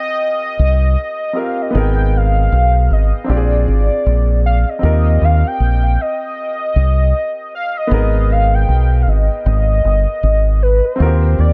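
Smooth, tender lovers rock reggae with a gentle swung lilt, in which a velvety, detuned sawtooth synth lead carries the melody up front through chorus and tape echo over polished baby grand piano accompaniment, while a round, punchy dub bass enters at 0.6 s and sits dark and prominent in a small room with light reverb.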